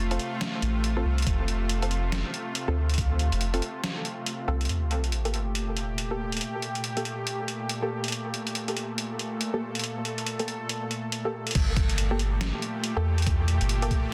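A nasal, string-like drone holds sustained chords at the front throughout, joined by a round, soft sub bass, muted filtered chord stabs with chorus and dub echo, and a gritty, pitched-down sampler-style kit of crash, hi-hat and snare. This dark, brooding deep dubstep runs at 140 BPM in G minor with a swung half-time feel. The overdriven thumpy kick drops out at 4.3 seconds, a sub drop lands at 4.7 seconds as the harmony moves from F to Gmadd9, and kick and bass return together for the drop at 11.6 seconds in a dense, heavily limited mix.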